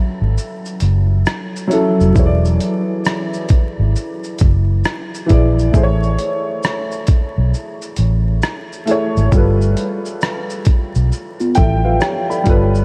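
Swung sixteenths in 4/4 give this hazy, nostalgic lo-fi hip hop excerpt a loose lope, set by a gritty, compressed sampler-style drum kit of thumpy kick, hi-hat, rim click and shaker beneath a dark, round, foam-muted electric bass. A worn, woody, slightly detuned upright piano with cassette tape coloring moves through F#m7, E7, Amaj7 and G9, and at 11.4 s a mellow tine electric piano joins with tape echo. The mix is dreamy and soaked in cathedral reverb, with vinyl crackle throughout.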